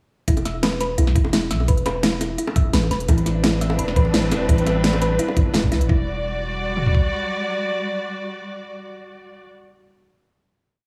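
Up-front dark chamber strings, bowed with vibrato and a soft attack, enter at 3.1 seconds and carry sustained chords with a sidechain pumping effect through to the close, moving from Am11 to a final Em9 that rings on after the drop ends at 5.9 seconds. This short, soulful and dreamy liquid drum and bass piece rides on rolling two-step electronic drums with a knocking kick, fat snare and crisp hats, a deep, mellow sine 808-style bass, and light high-tuned bongos in the background. A round, tine-like FM thumb-piano-style pluck, treated with chorus and analog delay, repeats a 6-step arpeggio loop that drifts against the bar, all set in a reverb-soaked plate and small room ambience.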